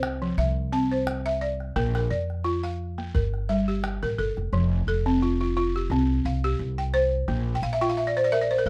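West African traditional string and xylophone music, flowing and joyful, cut from a longer piece. A buzzing, woody balafon struck with rubber mallets sits up front, spinning arpeggios over a dark pizzicato upright bass with steel strings, while a deep calabash recorded in a live room plays only until 4.4 seconds. Light reverb gives the production a warm glow, and the balafon closes with a fill from 7.5 seconds to the end at 8.7.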